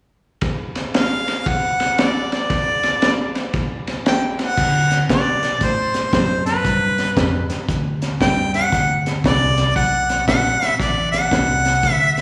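A crunchy, gritty breakbeat drum kit with dark cymbals, a high-tuned snare and a punchy kick, touched by slapback echo, opens this laid-back, swaggering electric blues shuffle fragment at 116 BPM in D mixolydian, soon joined up front by a warm, soft-attacked jazz-style harmonica solo full of light vibrato, tongue slaps and scooped notes, carried on slapback echo and analog delay, before a round, foam-muted vintage electric bass enters at 4.6 s as the changes move from D7 to G7 and back, all heard like a live gig through a venue's PA with light reverb.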